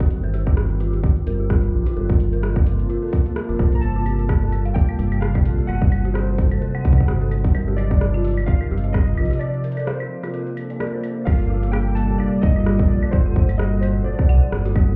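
An overdriven electronic kick, tight and up front with the ring of a large room, anchors this cerebral, glitchy IDM excerpt at 129 BPM in G minor. Alongside it, a round, deep analog bass blends sawtooth and sine with ring modulation into an evolving, mellow low end. A glassy FM pad holds ethereal sustained chords through ensemble chorus and its own reverb, while a dark detuned synth bell spins eerie, inharmonic arpeggios through chorus, phaser and dub echo. A quieter analog drum machine adds claves, crash, rim clicks and metallic, tape-tinged hi-hats with delay over a 16th-note swing, and at 3.7 seconds warbly lo-fi synth keys enter with a nostalgic, detuned melody carrying a sub octave, filter sweep, chorus and delay. The harmony moves through Cm7/G, Gm9 and Adim7, with a break from 9.4 to 11.3 seconds before a new section turns toward D7b9/G. The mix sounds muffled, as if heard through the wall of a club.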